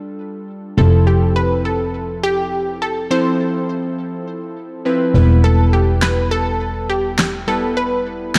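A driving, bittersweet dance-pop excerpt at 103 BPM opens at 0.0 s with glassy, sine-toned digital keys with a filter sweep and chorus over a dark, bowed double bass with a soft attack, airy and nasal yet floating. At 0.8 s a round, detuned sawtooth pluck carries the melody with chorus and tape echo as the chords move from a G7 with its third omitted to Fmaj7 and on to Em. Layered electronic handclaps and a fat, tape-warm snare arrive up front at 6.0 s, all set in a lush hall reverb with a dark production.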